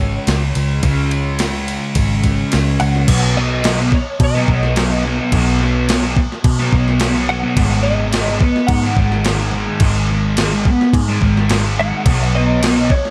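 A double-tracked, up-front fuzz guitar drives this dreamy, blissful shoegaze and dream pop rock excerpt with a distorted, lushly chorused riff, set over a thumpy, overdriven 12-bit drum machine, a round, foam-muted vintage bass and a clean, direct-recorded electric guitar melody carrying ensemble chorus and digital delay, within a dark, dry production.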